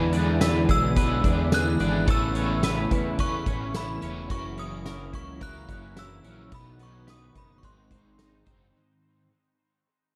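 A haunting, ethereal dream pop passage opens with a bright, overdriven semi-hollow guitar wrapped in harmonic tremolo, chorus and dub echo, a twangy twelve-string electric guitar picking compressed arpeggios, a smooth, slow-blooming analog pad in the background and a thick, saturated analog bass moving through E7, Aadd9, F#7, B and G#. A loose indie drum kit, distant and roomy with a fat snare and punchy kick, comes in at 0.1 s, while a delicate, slightly out-of-tune celesta adds a very quiet, sweet sparkle from 0.4 s. From 0.7 s an inharmonic FM synth chime carries the melody with long, ringing decays, all heard through an echo-heavy mix that fades out across this section of a longer piece.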